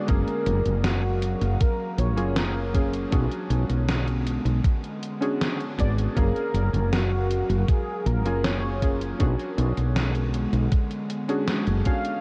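A woody, growly fretless electric bass sits up front of this dreamy, nostalgic vaporwave excerpt at 79 BPM in F# major, anchoring a slow sway between F#maj7 and Bm6 alongside a thumpy electronic kick and a gated 80s digital drum machine supplying hi-hat and snare. A velvety synth lead with vibrato carries the melody through chorus, cassette tape and tape echo, while an electric grand piano with a clangy low end and short sustain adds accompaniment through analog chorus and diffuse ambient delay. A warbling, detuned tape-like pad holds sustained chords in the background with chorus and phaser, and the whole mix is soaked in a huge ambient reverb with an 8.2-second tail and a cassette-tape haze.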